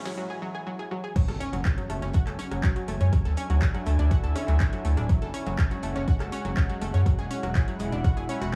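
Dry and close, this driving, cinematic melodic techno excerpt at 122 BPM in F# minor builds briefly before dropping at 1.2 s, where an overdriven, up-front electronic kick and a gritty, distorted synth bass join a punchy, metallic deep house drum kit, while a bright, detuned analog pluck arpeggiates over a dark, morphing wavetable pad and a soft, breathy pad, with a very quiet riser and impact and a faint, smooth acoustic jazz kit tucked beneath.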